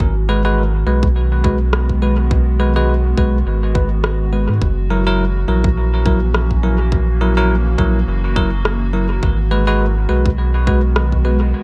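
Spacious and peaceful, this short cut from a longer ambient dub piece moves at an easy, gently swung pace, its mix soaked in echo over a light digital ambience. A warbling, nostalgic pad holds sustained chords throughout, its detuned, lo-fi tone softened by chorus, phaser and its own reverb, sitting low and mellow beneath the other parts. A deep, round sub bass sits up front with a warm, sine-like body, while a tight electronic kick anchors the pulse. From 0.3 seconds, a bright, clean, bell-like tine electric piano adds direct stabs that trail off into dub echo. An electronic rim click joins at 1.7 seconds, also thrown into echo, as the harmony drifts from G#m7 to F#7 and back to G#m7.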